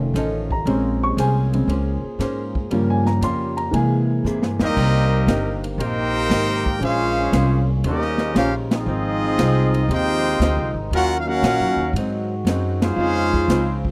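Brassy and swinging, this big band excerpt at 117 BPM opens with an intimate grand piano solo, its action noise audible, over woody, thumpy pizzicato upright bass, a dark, clean archtop guitar in the background, very quiet sustained chords from a dark trombone section, and a polished drum kit with a punchy kick that enters at 0.2 s. A drum fill from 4.3 s leads into C minor at 4.8 s, where a brilliant trumpet section with light vibrato carries the melody up front and a clear, soft-attacked trombone section plays a second line, with band accents at 8.6 and 12.7 seconds. The sound is a dry, close 1970s-style studio recording with little reverb.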